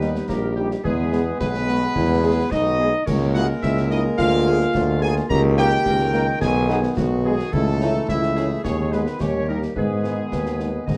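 A resolute, martial wind-band march in two opens with the full ensemble at once: a mellow trumpet section carries the melody over an up-front, clear tuba bass, while a soft-attacked euphonium and a close-miked woodwind section trace second lines in the background. Behind them, French horns with light vibrato fill in the accompaniment until 10.7 seconds, and trombones hold smooth-topped sustained chords, all in a classical style. Concert snare, bass drum and dark clash cymbals sound from a small room, and the dark, warm production with light reverb suggests a fragment cut from a longer piece, resolving from D#7 to G# minor at 9.8 seconds.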